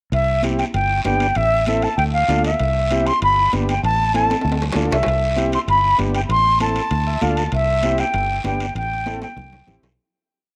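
An airy silver concert flute leads this festive, joyful cumbia, its tongued, vibrato-laced melody built from song-like motifs, sitting up front yet carrying a distant quality. Beneath it, a punchy, foam-muted fingered electric bass plays a direct cumbia figure up front, while a vintage combo organ adds reedy, heavily vibrato-soaked triad chords in rhythm. In the background, bright high-tuned congas play off-beat hand-drum parts, ringing metal-shell timbales and bell sound close and dry, and a raspy, band-limited guiro scrapes long and short strokes. The straight 4/4 groove moves at 195 BPM in C major, cycling through C, G, Am and Dm, with a moderate plate reverb lending the whole piece a sense of space. A drum fill arrives at 4.3 seconds, the transistor combo organ takes a short fill at 6.9 seconds, and the piece fades out from 8.0 seconds.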